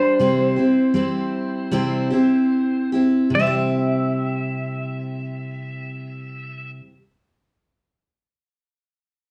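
The recording has a dark, warm studio sound with a moderate room reverb. This brief fragment of a longer country piece in C major moves at a straight, unhurried 70-82 BPM in 4/4, easing its tempo over the first 3.4 seconds, with a down-home, nostalgic mood. Up front, a picked jumbo acoustic guitar carries the accompaniment from its low C3 up to G4, its tone bright and full-bodied, and it rings on until 7.0 seconds. Alongside it, a clean, compressed electric pedal steel guitar plays the melody in a narrow high range from C5 to E5. The pedal steel is played with fingerpicks and slide, using volume swells and a slapback echo, and it falls silent at 6.7 seconds. The harmony centres on a C chord, and a second section begins partway through as the phrase unfolds.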